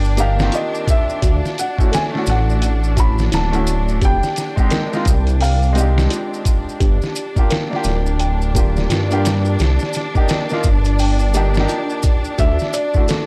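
A deep, rumbling detuned saw bass sits up front in this brooding, cinematic trip hop fragment, its mellow, beating tone carrying the low end until 12.6 seconds. A compressed, pitched-down sampler-style drum kit keeps a 4/4 groove at 86 BPM with a 16th-note swing, pairing a thumpy kick and muffled, medium-tuned snare with hi-hat, while quiet maracas and a group handclap add a small-room acoustic shimmer. A felt-muted upright piano carries the soft, intimate melody through 6.1 seconds and briefly again near the close, its audible action noise roughened by 12-bit sampler grit and tape echo. Beneath it, a clear, woody upright piano plays accompaniment with tremolo, and a delicate, tinkling music box spins arpeggios in the background. A lush, bowed violin section holds bright, intense chords with vibrato, and from 8.3 seconds an airy, breathy wind-like noise layer adds a dark, very faint haze. 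The harmony moves through Cm9, Dmaj9, Fm9 and Gm7, returns to Cm9, then settles on Dadd9, all captured in a dry, gritty hardware sound with studio reverb.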